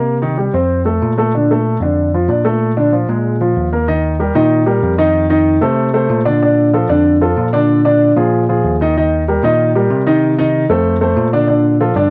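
Afro-Cuban jazz with a sophisticated, lively mood, this fragment of a longer piece sets an intimate grand piano, carrying audible action noise, long sustain and a cassette-tape colour, up front as accompaniment, while a bell-like, bright and clean tine electric piano plays the bass line underneath. Both parts run throughout, moving through a Cm7, F and Bbmaj7 opening before a new passage at 3.9 s turns toward Eb, F6 and Bb7 and comes back around to Bbmaj7. The home cassette recording sits in light reverb and studio ambience.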